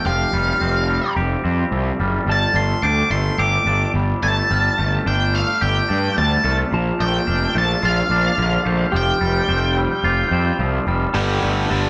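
An up-front, fuzz-drenched octave lead guitar carries the melody in this brooding, cathartic post-rock passage, over a round, overdriven picked bass, twangy clean guitar arpeggios, mellow bell-like glockenspiel arpeggios from soft plastic mallets and a compressed pedal steel's slide chords and volume swells in the background, the band playing live in one room with a large studio reverb, until a tight, bright distorted guitar riff enters at 11.1 s.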